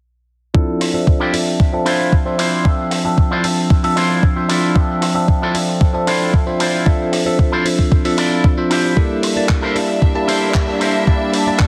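A thumpy, up-front electronic kick at 114 BPM in straight 4/4 drives this sensual, cosmic nu-disco excerpt in D minor, joined by a gritty, dusty sampler-style kit of handclaps and hi-hat, while a barky, bell-like tine electric piano carries a filter sweep through phaser and delay over Dm9, a twangy envelope-filtered electric guitar riff shimmers in lush chorus, and a distant, biting string section with vibrato and sidechain pumping enters at 9.0 s on C13, the whole set in a hall reverb with a heavily compressed radio sound.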